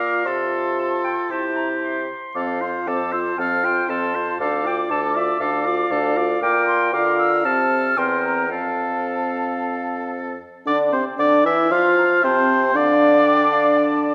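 A wind quintet opens together in a cheerful, graceful classical-period movement cut from a longer piece. A pure, mellow flute sings the high melody with vibrato and tongued notes, while a clear, up-front oboe with vibrato carries the second line. A warm, distant clarinet and a roomy horn with light vibrato fill in the accompaniment over a vintage-toned bassoon bass, all in a rubato 4/4 and bathed in wet scoring-stage reverb, with harmony passing through D minor and B-flat before the opening phrase returns at 10.7 s.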